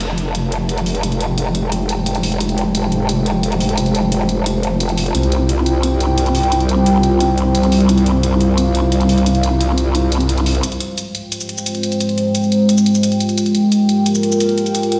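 Tense and dark, this cut from a longer dark technical drum and bass track moves at 175 BPM in a straight 4/4, centred on F minor. A growling, detuned bass sits up front with a saturated, wobbling formant-filtered tone and chorus, holding the low end from the start until it drops out at 10.6 seconds. Above it, a moody analog pad built from square, sawtooth and triangle waves with a sub octave enters at 0.8 seconds, its slow attack and long release carried through chorus and phaser as the harmony shifts from Fmadd9 to Csus4 and back. Bright, overdriven electronic hi-hats layered with shaker run throughout, sounding as if re-recorded in a small room. The last stretch from 10.6 seconds becomes a build-up of pad and hats alone, and the whole mix is heard through a lush hall reverb, as if played on a big sound system in a bare stone room.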